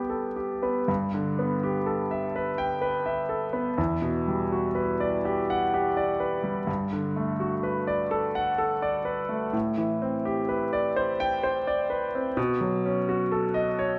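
A moderate recital-hall reverb surrounds an up-front, intimate concert grand piano, its bright treble, deep bass and long sustain carrying audible action noise. This hazy, serene impressionist solo piece moves in a slow, rubato triple metre with uneven beats, the pianist ranging from E2 to G5. Lush extended harmonies drift from Gadd9 through Em9, Gmaj9 and Am11 to a B9 near 12.4 seconds, in a fragment cut from a longer work.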